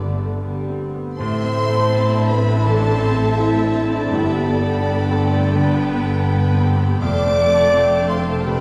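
Cinematic, emotional film score for orchestra, longing and bittersweet, flowing in a rubato feel as a short cut from a longer piece, with a lush violin section carrying the expressive, vibrato-rich melody while a second violin line enters at 0.1 s and a mellow cor anglais weaves its own line. The French horn section holds mellow, vintage-toned sustained chords most prominently, supported by a bright grand piano with audible action noise, a portamento-inflected viola section, a ringing fingerpicked concert harp playing arpeggios, and a bass of smooth, rich cellos and woody double basses. At 1.2 s a clear clarinet and an airy, distant flute section add further lines as the harmony settles onto A minor, all set in a wet scoring-stage reverb heard from further back in the room.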